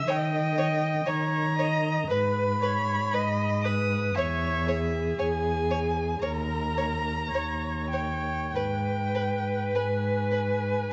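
A bowed violin melody with a soft attack, vibrato and expressive portamento opens this yearning, solemn slow movement for string quartet in G# minor, alongside a rich, distant viola accompaniment, joined at 0.1 s by a smooth, even second violin line and an up-front, warm cello bass, the quartet moving with rubato at 48-61 BPM through D#7, G#m, C#m/E, D#5 and G#m in a moderate scoring-stage reverb captured by close, detailed microphones.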